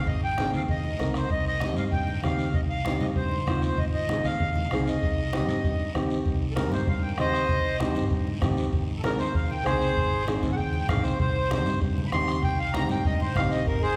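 A reedy, airy accordion sits up front and takes a solo from 6.3 s in this fiery, driving cumbia at 194 BPM in C minor, moving between Ab and C minor over a round, punchy fingered electric bass, a soft-beater bombo, low-tuned congas set distant in the background, a raspy guiro and a dark, woody upright piano with long sustain, all bathed in the reverb of a concert hall.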